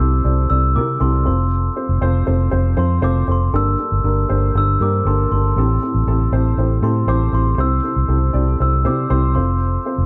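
Glockenspiel, upright piano and electric bass enter together at the start of this anthemic pop excerpt in C mixolydian, moving at a straight 119 BPM in 4/4 over chords of C, F, Gmadd9 and Am7. A round, punchy, foam-muted bass sits up front beside a woody, slightly detuned piano. Above them, a bell-like glockenspiel struck with rubber mallets carries the melody through a delay until 9.8 seconds, all in a dark, warm small-room production.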